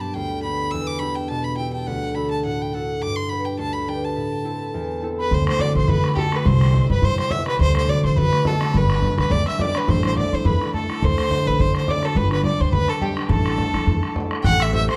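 A clear, bowed fiddle with light vibrato leads this driving, spirited Celtic reel at 210 BPM in 4/4 with a lightly swung feel, its up-front melody carrying plate reverb and tape echo over the mellow, ringing fingerpicked lines of a concert harp. At 5.2 seconds a bright, reedy wooden whistle with a crisp chiff enters as a second line in the background, and at 5.3 seconds a woody, thumpy pizzicato upright bass and a damped, tight bodhran, heard at a distance in a large room, join in. The production is dark with a wet studio ambience.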